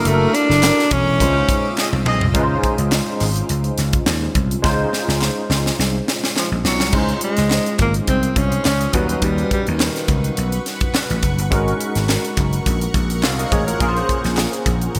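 Upbeat and urban, this short cut from a longer piece is polished 1980s jazz-funk pop with a gentle swing in its sixteenths. A crisp fusion drum kit sits up front with a punchy kick and a high-tuned snare, fills at 1.8 and 4.6 seconds, and very quiet hollow group handclaps from 0.6 seconds. A growly, amped vintage slap bass drives the low end while a barky tine electric piano, clean and direct under an ensemble chorus, carries the accompaniment throughout. A close-miked, breathy alto saxophone with light vibrato and a soft subtone states the melody at the opening and again from 6.4 to 10.8 seconds, trailed by delay, and a distant, roomy horn section adds a brief second line near the start. Behind it all, a shimmering, ethereal pad with chorus, phaser and its own reverb holds sustained chords in the background, with chords moving through altered dominants and a suspended ninth to a closing Bbm9, framed by a bright digital production with light studio reverb.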